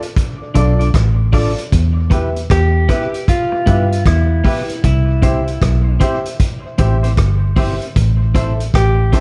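A relaxed 77 BPM roots reggae groove with a sixteenth-note swing rides on an up-front vintage drum kit of punchy kick, hi-hat and rim click, joined by a round, foam-muted fingered bass that sits loudest in the mix. A woody upright piano plays stabs from the start, a twangy, compressed picked electric guitar adds accompaniment from 0.5 s with warbly pitch drift and dub echo, and at 2.5 s a dark, fingered second guitar carries the melody through phaser and dub echo. Moving through Dm, Em, C and Am with light reverb and a warm production, this laid-back, meditative passage is cut from a longer piece.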